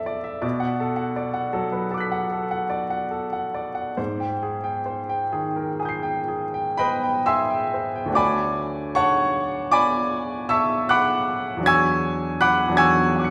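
In a slow, rubato 9/8 that drifts around 40-56 BPM, this hazy, serene stretch of impressionist classical solo piano in D Lydian unfolds over Bm7 and G#maj7 before shifting at 8.1 seconds to Dmaj7 and then E13. The baby grand sits up front with a clear, intimate, natural tone, long sustain and audible action noise, spanning D2 to C#7. A wet recital-hall reverb surrounds the instrument, and the passage is cut from a longer piece, ending at 13.3 seconds.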